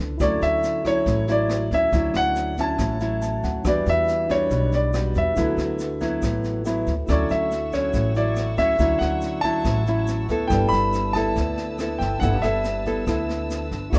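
The recording is close and dry, with little reverb, giving this romantic, breezy bossa nova passage, cut from a longer piece, an intimate feel. A clear concert grand piano carries the melody up front, its tone open with a deep bass, over a small, fingerpicked nylon-string guitar whose finger squeaks come through. A clean tine electric piano sits in the background, heard through its built-in speakers, and steps forward with a short fill at 3.0 seconds. Underneath, a woody, growly pizzicato upright bass anchors the harmony, while a brushed jazz kit with a boomy kick, rim clicks and a medium-tuned snare sounds natural in a small room, joined by a grainy, bright egg shaker. At 7.1 seconds a bowed chamber string section enters with earthy, smooth sustained chords and light vibrato as the progression moves through lush chords such as Dmaj9, Em9 and G69.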